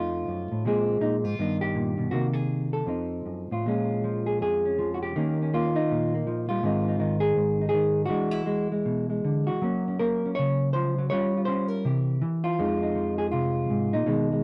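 Dark, lightly reverberant production frames this smoky, cool solo jazz passage, where a clean, fingered hollow-body electric guitar sits up front alone for the full 14.4 seconds, swinging with a loose rubato feel through chords such as F7b9, Gaug, E9 and Gbmaj7 before reaching Fm7.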